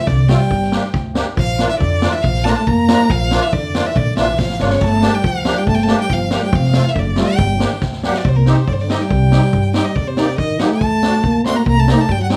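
A moderate small-room reverb and a touch of studio ambience frame this short klezmer passage, cut from a longer piece, which moves at 140 BPM in a straight 2/4 with a festive yet bittersweet mood. A clear, focused violin carries the melody with bowed vibrato, played close by one player, while a dark, breathy trombone with a whispered, soft-attack jazz tone sings a second line beneath it. A reedy musette accordion, its wet tuning shimmering, fills in the accompaniment, and a woody, thumpy pizzicato upright bass on gut strings holds the low end. The street-band drum kit pairs a boomy kick and high-tuned snare with dark splash cymbals and a rolled-off top, adding fills at 4.4 s and 7.8 s. At 8.2 s the music turns to C dorian sharp 4, with the harmony running through Cm, Eb and D before settling back on Cm.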